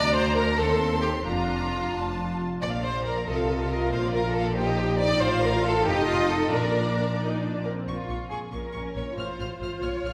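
A wet recital-hall reverb surrounds this lively, cheerful classical-period movement for string orchestra, a short passage cut from a longer piece. It moves in a lilting 6/8 with a flexible, rubato feel. Every section bows smoothly and evenly with vibrato. The violins carry the melody up high, sounding rich and close, while a second violin line sits up front with a lush, warm tone. Violas supply the inner accompaniment, and the basses are handled by double basses at the bottom and cellos with a smooth top, placed in the background. The harmony turns to a minor colour at 7.9 seconds before settling on a dominant chord at 9.2 seconds.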